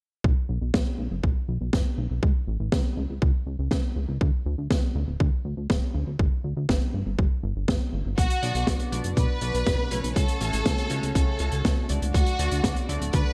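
This bittersweet, danceable italo disco piece in B minor opens at 0.2 s with a glossy, detuned synth bass and a punchy, overdriven electronic kick up front, joined at 0.7 s by an open jazz kit whose smooth hi-hat and high-tuned snare carry gated reverb, at a straight 121 BPM. At 8.2 s a lush violin section enters with vibrato, portamento and digital delay, and at 8.4 s a retro chorused polysynth adds filter-swept stabs over chords moving from Bm through F#m to D. A small room ambience surrounds the mix.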